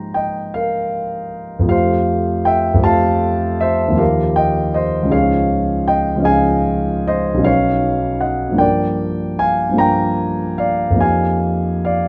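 A concert grand piano sits up front in a recital hall, its warm tone and deep bass carried by long sustain into a moderate, lingering reverb. This short passage of impressionist classical solo piano moves in 9/8 with free, rubato timing, and its mood is hazy and serene. The solo piano plays throughout the 12.1 seconds, ranging from B1 up to C6. The harmony drifts through added-ninth chords, opening on Ebadd9 over an Ab bass, passing through Fadd9, Ebadd9 and Dbadd9, then reaching Badd9 and settling on Gm7 at 8.6 seconds. Cut from a longer piece, it captures a single floating section of colored chords suspended in the hall's resonance.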